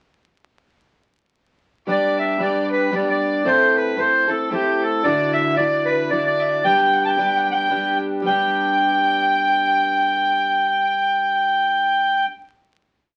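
Lively and bright, this short Celtic folk waltz in G major moves at 112 BPM in 3/4, with a swung eighth-note lilt. A reedy, hollow accordion carries the melody up front, close-miked, dry and full, spinning a motif-based tune built from period phrases between G4 and A5. In the background, a single clear fiddle with light vibrato and a smooth top plays the same line with its own ornaments, sounding intense though set well behind the accordion. A fingerpicked, plugged-in twelve-string acoustic guitar supplies shimmering, octave-doubled accompaniment in open chord shapes and eighths strumming, its fresh strings giving an auditorium-like sound. All three parts enter together at 1.9 seconds, moving through G, Am and Dadd9 back to G before a final chord arrives at 8.2 seconds and rings until about 11.5 seconds. The whole piece sits in a wet studio ambience and carries the crackle of a very old 78 rpm record.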